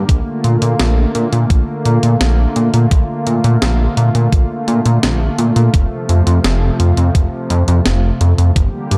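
A straight 4/4 pulse at 85 BPM drives this dreamy, nostalgic synthwave excerpt in Bb major: a thumpy, up-front electronic kick enters at 0.1 s alongside a clean 12-bit drum machine supplying hi-hat and a medium-tuned snare, both sampler-style kits sounding re-recorded in a large room. A glossy, nasal synth bass built from pulse and sawtooth waves, with a filter pluck and chorus, sits forward in the mix, while a smooth, warbling vintage pad of detuned sawtooth and triangle tones holds soft-attack chords moving from Bbmaj7 to F at 5.7 s, and both of these parts pump under sidechain compression. Light reverb and a dark, warm production give the piece its retro glow.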